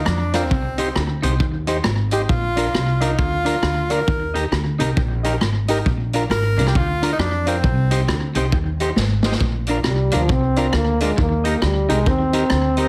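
Joyful and cheerful, this ska clip bounces along at 135 BPM in 4/4 with a swung eighth-note feel, moving through Bb, Cm and Eb chords. A clear, punchy tenor saxophone carries the melody up front with vibrato from the start until 8.3 seconds, bathed in slapback echo and plate reverb, while a bright, twangy clean electric guitar picks a riff in the background. Underneath, a woody, thumpy upright bass with gut strings sits up front beside a vintage drum kit whose punchy kick, medium-tuned snare, rim clicks and hi-hat have a rolled-off top. A dark, fingered semi-hollow guitar supplies accompaniment, and a smooth tonewheel organ adds stabs through a slow rotary speaker further back. After a drum fill, a clear trombone with a smooth top enters at 9.9 seconds for a solo, giving the passage a vibrato-laden lift. The whole mix has light reverb and a heavily compressed, radio-like sound.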